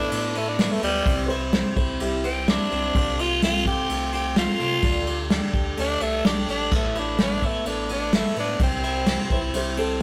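A straight 4/4 pulse at 127 BPM from a dark, up-front brush drum kit drives this reflective, dusty folk rock and heartland rock piece in A minor, while a round, sine-toned sub bass anchors the low end. A raspy, growling tenor saxophone takes a close-miked solo over a bright, compressed twelve-string electric guitar riff, a boxy ladder-braced acoustic guitar with old strings, and a very quiet warm upright piano. A second, clear upright piano with audible action noise adds a line at 1.2 seconds and again at 9.3 seconds, all captured in a rough rehearsal-room recording with light reverb and saturation as the chords move through Asus2, C, F/C and Dsus4.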